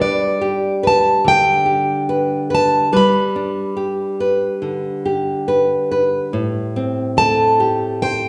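A reverberant recital-hall sound with a 1.3-second decay surrounds this short cut from an intimate, reflective acoustic folk-pop ballad at 71 BPM in a straight 4/4. Up front, a picked, parlour-toned plugged-in steel-string acoustic guitar carries the melody between D5 and B5, while a bright, fingerpicked classical nylon-string guitar supplies the accompaniment from A2 to C5. Both play throughout the 8.3 seconds, resting on G before moving to Am7 at 6.3 seconds as a new section begins.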